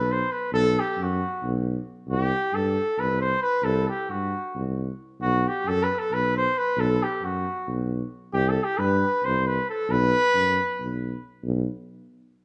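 A straight 7/8 pulse at 269 BPM in eighths drives this restless, virtuosic Balkan folk passage, cut from a longer piece, with harmony shifting between B5 and C5. A cornet carries the melody in a classical style, sounding mellow yet distant and roomy, while a soft-attacked tuba holds the bass, both placed up front. A moderate recital hall reverb surrounds the pair; the cornet stops at 11.0 seconds, and the tuba carries on into a brief closing section that begins at 11.4 seconds before stopping at 11.7 seconds.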